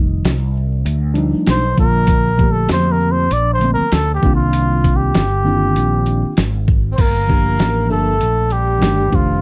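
A relaxed 98 BPM groove in 4/4 with a loose 16th-note swing sets up this mellow, cool jazz-hop excerpt, cut from a longer hip hop piece. A dusty, sampler-style drum kit sits up front with a thumpy kick, a medium-tuned snare, hi-hat, shaker and crash, its sound compressed and gritty, while a round fretless electric bass with an ensemble chorus holds the low end. A worn, slightly out-of-tune tine electric piano supplies clean, direct accompaniment over chords moving from F13 through Bbmaj7 and Cm11 to Gm7. At 1.5 seconds a cup-muted trumpet takes the lead with a veiled, whispered solo, its soft attacks and scooped notes giving it an intimate jazz character. Around 6.9 seconds a breathy tenor saxophone slips in behind it with subtone and vibrato, just as the music shifts into a new section at 7.0 seconds. The dry, close recording has a 1970s studio feel, dusted with vinyl crackle.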